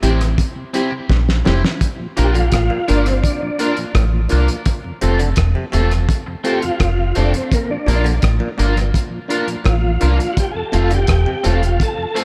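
A smooth tonewheel organ takes the lead at 2.2 seconds, its solo carried by chorus vibrato, a fast rotary speaker and tape echo, lifting this uplifting roots reggae excerpt at 84 BPM in a straight 4/4. Underneath, a cloth-damped drum kit sits up front with a fat snare, tight kick, rim click and hi-hat, its muffled, gritty tone rolled off at the top, and it plays a fill from 1.1 to 1.8 seconds. A deep dub fingered bass, dark, round and punchy, anchors the low end beside it. In the background, a mellow organ with key click and a slow rotary speaker supports the accompaniment, and a reedy, overdriven electric piano with fast tremolo adds stabs, while a twangy, slightly broken-up electric guitar with analog chorus and tape echo fills out the accompaniment. A very quiet, stringy clav picks out arpeggios. The chords move from C to Bb, F, Bb and back to F, all set in an echo-heavy mix with light reverb and a lo-fi, small-room character.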